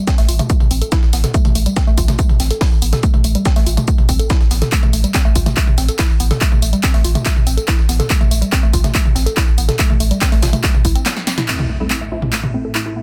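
A woody, wave-folded pluck riff in A minor opens this driving, relentless peak-time techno cut at 142 BPM, joined at once by an overdriven, up-front kick, a punchy analog drum machine, gritty breakbeat-style hats and snare, and a thick, saturated sub bass, everything but the kick pumping hard until a drum fill and break at 11.1 seconds give way at 11.5 seconds to an electronic impact and aggressive detuned rave stabs with tape grit, followed at 12.1 seconds by a swarming drone in the background.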